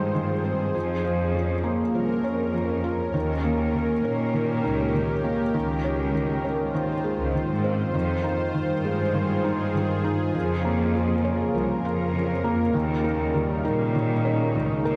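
Piano and strings electronica with an intimate, hypnotic mood, cut from a longer piece. A felt-muted upright piano plays a soft, mellow riff with audible action noise and tape echo, while a lush, nasal, detuned sawtooth pad sustains chords through chorus and shimmer reverb, and a bowed cello section carries the bass line with focused vibrato. All three parts play throughout the 15 seconds, set in a huge ambient reverb with a dark production.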